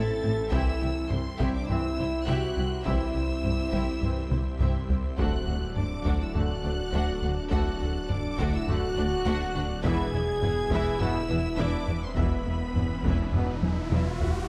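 Closely miked and detailed with a light reverb, this vast, relentless cinematic cue blends orchestra and electronics in a straight 4/4, moving through Am, C, D and E. Lush violins carry an expressive, vibrato-rich melody high above a second violin line, while viola, cello and double bass sections bow underneath; a distant French horn section and a tight trombone section hold chords, and a bright, organ-like pad with ensemble chorus sits behind them. Below, a rubbery square bass riff and a swirling phased saw bass thicken the low end as hard-stick, saturated taiko drums enter half a second in, with fills at 4.3 and 13.6 seconds and an electronic riser entering at 12.4 seconds before the cut-off end.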